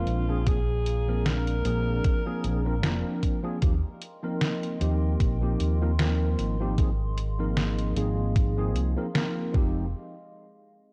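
A mellow alto saxophone with vibrato opens this nostalgic, woozy vaporwave fragment alongside a clean tine electric piano with analog chorus and delay, and a dark, round fingered electric bass sitting up front. The sax phrase, touched with tape echo, ends by 3.2 seconds, leaving the piano and a faint, warbling, detuned tape-like pad to carry Bb7, Eb6 and Ab6 chords at a lightly swung 76 BPM. A detuned 8-bit drum machine supplies hi-hat and snare while a thumpy electronic kick keeps time, all through a dry, gritty cassette-like sound.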